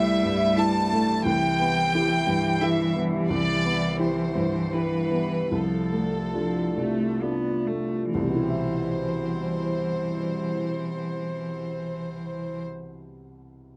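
A chamber violin section sings the melody with light vibrato and a soft attack over a focused, smooth-topped solo cello and a woody, boxy upright piano with long sustain, opening this intimate, hopeful neoclassical piece in 3/4 and C major at a rubato 62-89 BPM, soon joined in the background by a deep, moody, detuned analog pad under chorus and phaser, with the tempo slowing between 2.3 and 8.2 seconds and the piano carrying on alone from 12.6 seconds in a close, dry, detailed sound.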